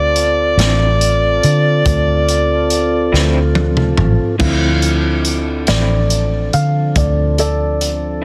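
A gritty, overdriven harmonica with tongue slaps and scooped notes leads this brooding, mournful slow blues in 12/8 at 47 BPM in D minor, falling silent at 3.5 s before the warm concert grand piano takes a solo from 4.4 s over a round, foam-muted electric bass, a saturated breakbeat drum kit with dark cymbals and a fill from 3.1 s, a soft, flute-like tonewheel organ on a slow rotary speaker, and a lo-fi electric guitar with tremolo in the background, set in a small room with a dense, heavily limited master.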